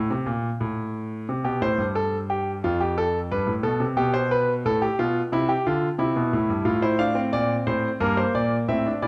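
A clear concert grand piano opens this short cut from a baroque-style three-part fugue in F major, moving at 89 BPM in a straight 4/4 with a lively, stately bearing. Across its span from F2 to F5, the solo piano has a deep bass, a natural tone and long sustain, placed up front by close, detailed microphones within a moderate recital hall reverb. The harmony passes through chords such as Fadd9, G7/B and F/A before arriving at Gm near 8.0 seconds, just ahead of the cut at 9.1 seconds.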